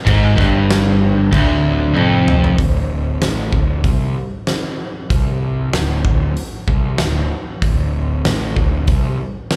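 A crunchy overdriven guitar with harmonic tremolo sits in the background of this driving, heavy hard rock excerpt, joined almost at once by an up-front, bright, hollow-bodied semi-hollow guitar as both play a low riff over a D minor chord, while a warm, fuzzed-out picked bass and a huge arena drum kit with a fat snare, punchy kick, crash, hi-hat and toms kick in underneath. A drum fill at 1.9 seconds leads into a D5 power chord, and the guitars drop out at 2.6 seconds. The overdriven bass carries on until 9.2 seconds, and the drums continue until 9.6 seconds. It sounds like a live gig heard through the venue's PA, with a touch of club reverb.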